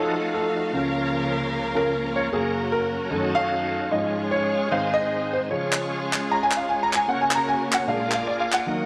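Reverent and soulful, this short uptempo gospel passage moves at 151 BPM in 4/4 with a swung eighth-note feel, centred in D-flat major and tuned slightly below standard pitch. A concert grand piano leads throughout, sitting up front with an intimate, natural tone, deep bass and audible action noise as it carries the solo line over the accompaniment. Behind it, a bright tonewheel organ holds full, shouting chords with key click, chorus vibrato and a slow rotary speaker, while a chamber string section adds focused, bowed sustained chords with vibrato. At 5.7 seconds a close, dry group handclap enters with a crisp, human snap and continues until 8.6 seconds. The harmony travels from F7b9 through Gbm6 and Db/Ab before settling on Db and closing on Bb7, all set in a moderate plate reverb that lingers for about 2.4 seconds.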